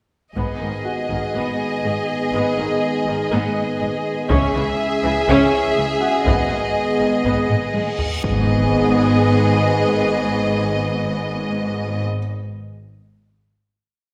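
A cinematic hybrid orchestral and electronic film score in G# minor at 122 BPM, relentless and futuristic, where a rich violin section carries the melody over a warm second violin line, a dark viola ostinato with portamento, a driving cello ostinato and double basses doubling the bass line, while a dark French horn section and a hollow, flute-like pad with chorus hold sustained chords. A heavy-stick taiko ensemble pounds a big drum ostinato at the opening and again from 4.3 to 8.3 seconds, and a felt-muted upright piano adds sparse, very quiet single notes. A drum fill and a huge, bright reverse cymbal lead into a low impact at 8.2 seconds, and the piece closes on a final chord ringing in a wet recital hall reverb.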